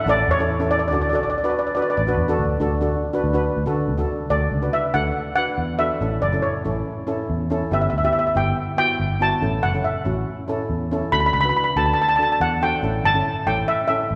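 Washed in a wet concert-hall reverb with a long 2.2-second tail, this bouncy, carefree calypso fragment in D major moves at 141 BPM in a straight 4/4. Two up-front double-seconds steel pans played with medium rubber sticks carry the music: one sings a shimmering melody from C#5 to B5 while the other supplies metallic accompaniment lower down. A growly, foam-muted fingered electric bass anchors them through an A, D, Em/G and A7 progression across the full 14.2 seconds.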